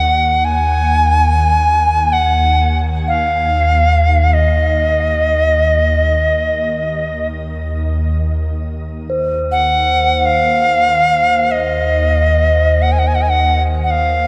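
A bright, reedy cedar flute with airy chiff and vibrato carries a haunting free-time melody in Eb dorian over an ethereal, detuned pad drone on Eb2, with a ringing bronze singing bowl entering at 9.1 seconds, all bathed in wet cathedral reverb in this dark, meditative world-music excerpt.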